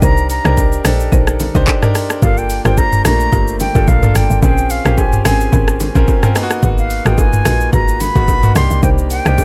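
A swung sixteenth-note groove at 109 BPM in 4/4 drives this hypnotic, late-night amapiano excerpt, with an electronic afro-pop kit up front: a deep kick, dark hi-hats, handclaps, rim clicks, shaker and toms. Beneath it, a punchy log drum bass with a woody, decaying attack carries the low end, while very quiet congas and bongos add a bright, vintage, band-limited shimmer. A clear, intimate grand piano supplies the accompaniment, its action noise audible, as a dry, rustic marimba sits in the background with delayed stabs. Over the top, a concert flute carries the melody in a pure, straight, tongued tone, also touched by delay. The harmony moves through Cm7, Gm7, Bbm7 and Abm7 before returning to Cm7 at 8.6 seconds, all within a dark production that has little reverb.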